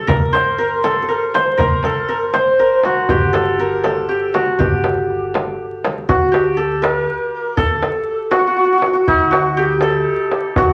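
Festive yet stately, this Persian modal ensemble piece moves at 80 BPM in a straight 6/8, set in avaz esfahan on G and cut from a longer performance. The hammered santur carries the melody up front, its shimmering, ringing tone leading throughout. Alongside it, a breathy, reedy low ney traces a second line from a distance, very quiet, with tongued notes and a gentle vibrato. A pizzicato upright bass adds a woody low foundation, while a tight, close tombak drives the percussion from start to finish. A deep, large frame drum struck with hard hands joins it until about 6.0 s, just before the music moves into a new section at 6.1 s. A club-like reverb and a layer of vinyl crackle give the whole recording a worn, intimate glow.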